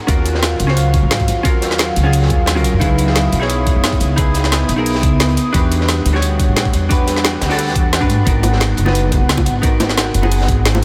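A straight 4/4 liquid drum and bass groove at 176 BPM in G# minor, this lush, soulful excerpt runs on an overdriven, knocking electronic kick and a layered kit with a woody snare and bright hats, backed in the distance by a gritty, rolled-off breakbeat kit whose high-tuned snare sits behind the rest. An up-front, thumpy pizzicato upright bass on gut strings carries the low end with tube saturation, while a clean, picked hollow-body jazz guitar with subtle chorus and diffuse delay plays accompaniment over a glassy, ethereal FM pad sustaining D#m9, C#m9, Em9 and G#m9 chords. Round, low-tuned bongos join in the background at 8.4 seconds, and the whole dreamy mix is soaked in a huge ambient reverb with a faint mains hum beneath it.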